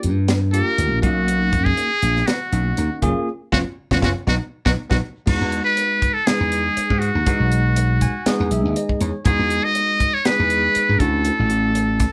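A live, one-room studio sound with moderate ambience frames this radiant, soaring slice of electric jazz fusion, cut from a longer piece and moving at 120 BPM in 4/4 with a light sixteenth-note swing. A trumpet with a metal mute carries the melody up front as a jazz-style solo, its tone buzzy and thin, with vibrato, soft attacks and scooped notes. Beneath it, a punchy, amped slap bass and a dry, tight funk drum kit with bright cymbals, a high-tuned snare and a tight kick sit forward in the mix. A bell-like, barky tine electric piano supplies clean accompaniment a step further back. The harmony passes through major-ninth chords, and after a band accent capped by a drum fill it arrives in E major at 5.3 s. The electric piano then steps out with a short fill at 7.8 s.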